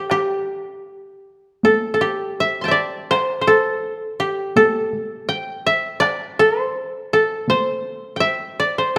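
Austere and calm, this rubato passage of Japanese traditional chamber music, cut from a longer piece, sets a mellow, woody koto melody played with fingerpicks up front while a taiko ensemble struck with hard sticks sits further back in a small-room sound until 7.7 seconds, all within a moderate recital-hall ambience.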